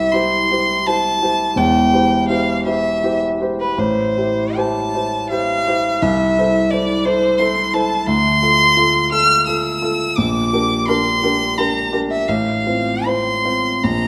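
A single bowed violin carries the melody up front, its rich, smooth tone shaded with vibrato and kept even from phrase to phrase, though it also carries a slightly distant quality. This is a tender, lyrical romantic classical duo in 3/4, played with a flexible rubato feel and tuned slightly low at A4 = 435 Hz. A warm grand piano, also up front, supports the violin throughout, its notes having a short sustain that reaches down into the deep bass. The harmony moves from C through C/E, Am7 and Am/C before settling toward Dm7, Gm/Bb and F/A from 8.1 seconds onward. A wet concert hall reverb with a 1.8 second decay surrounds both instruments, giving the duo a spacious, resonant setting. The passage lasts 14.1 seconds and is cut from a longer piece.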